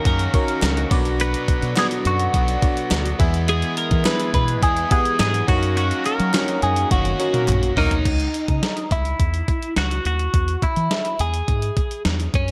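A bright, compressed twelve-string electric guitar carries the melody through phaser and tape echo in this glossy, uplifting 1980s-style pop excerpt at 105 BPM, set over a thumpy 12-bit drum machine with gated reverb, a dark, round fingered bass and very quiet, crisp handclaps, while a glassy, bell-like FM electric piano, an overdriven stack guitar in the background and a soft, distant woodwind section fill out the opening section until it gives way at 8.1 seconds, with tight horn stabs arriving at 7.3 seconds amid a band accent and drum fill.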